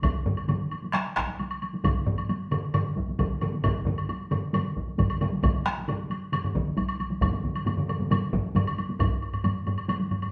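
Four taiko ensemble parts, struck with heavy and hard sticks, open together with a woody, vintage, band-limited woodblock in this ceremonial, powerful Japanese traditional drum piece at 134 BPM in straight 4/4, two ensembles close and dry, two in a small room with one up front, the whole band heard live in one room under a wet large studio reverb, until one ensemble drops out at 8.7 s and another at 9.1 s as this short cut from a longer piece moves into a new section at 9.0 s.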